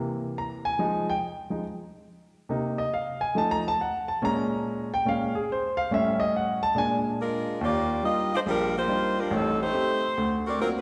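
Swinging and joyful, this short jazz excerpt opens with a baby grand piano playing alone, its intimate, up-front tone carrying audible action noise and short sustain as it moves through a chain of seventh chords in a swing feel. At 7.2 s a close-miked saxophone section enters with the melody, its ensemble sound carrying a light vibrato, as the harmony settles onto an Ebmaj9 before moving to Am7b5 and D7b13. A recital hall reverb with a 1.6-second decay surrounds the instruments with the natural ambience of a church or concert hall.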